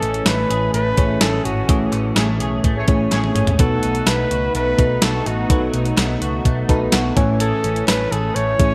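A bright, glossy 1980s-style digital production with a plate-reverb sheen frames this romantic pop excerpt at 126 BPM, where a punchy, close-miked flugelhorn with vibrato carries the melody up front over a thumpy 12-bit drum machine with gated reverb, a dark, round hollow-body bass and a clean, compressed electric guitar riff touched with chorus and delay. Behind them sit a warbling FM electric piano and an airy, brassy analog pad with chorus, while a barely audible crisp group handclap joins at 0.3 s. Fat, detuned synth brass stabs with tremolo punch through a band accent around 2.2 s, a drum fill leads the move from Amaj7 to B7, and the electric piano adds a fill near 6.5 s before the return to Amaj7.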